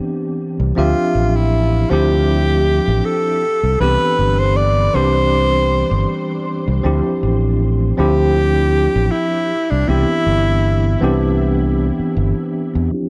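Dreamy and faded, this short vaporwave cut moves with a gently swung feel. It opens with a tine electric piano whose clean tone carries medium tremolo, analog chorus and tape echo through a combo amp. A warm, amped fretless electric bass enters at 0.6 seconds, and a close-miked alto saxophone takes the solo melody from 0.8 seconds, its clear, classical tone shaded with vibrato and trailed by tape echo, while the harmony alternates between Cmaj9 and Dm11 in a small room with light reverb and a low-pass filter over the mix.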